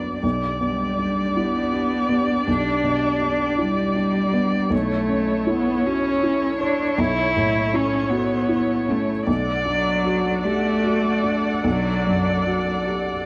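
A slow, rubato 6/8 sways at 53 dotted-quarter beats per minute in this short neoclassical piece for piano and strings, which is cut from a longer work and tuned to A4 = 438 Hz. Its mood is reflective and fragile. A felt-muted upright piano sits up front as a mellow, intimate accompaniment, with its action noise clearly audible. A con sordino viola adds veiled accompaniment with vibrato and portamento, while a dark, muted cello carries a second line until 12.9 seconds. Behind them, a lush muted string section holds soft sustained chords in the background as the harmony moves from G/B to A/B to D/B over a steady B in the bass. Close, detailed microphones and very little reverb keep the sound dry and near, and the piece runs to 13.3 seconds.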